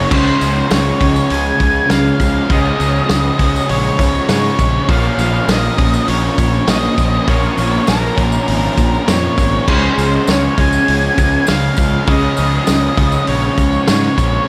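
A dark octave-fuzz lead guitar with delay sings its melody over three background riff guitars (a bright, double-tracked crunchy overdriven one with ensemble chorus, a compressed overdriven electric one with reverse reverb, and a very quiet thick fuzz one) and a round, punchy fuzz fingered electric bass, joined at 0.1 seconds by an up-front, gritty loose indie drum kit with dark cymbals and then a faint jingly tambourine, in this wistful, hazy shoegaze and dream pop fragment at 100 BPM in Db major, moving from Db to Bbm and back, all soaked in lush hall reverb.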